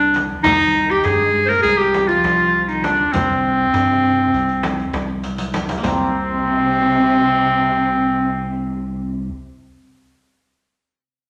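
Longing and hypnotic, this short excerpt from a Turkish makam ensemble piece in C makam nihavent moves in 9/8 at 200 BPM in eighths, with a bright, classical-style clarinet carrying the solo melody up front over a lush, dark bowed cello section and a fingerpicked qanun with bright-edged triple strings. A round analog bass sits deep and nasal underneath, while a soft-handed frame drum in the background and a riq with vintage, band-limited jingles keep the pulse until 6.1 s, after a drum fill at 5.2 s leads into a new section. A large studio reverb gives the ensemble a wet, spacious sound.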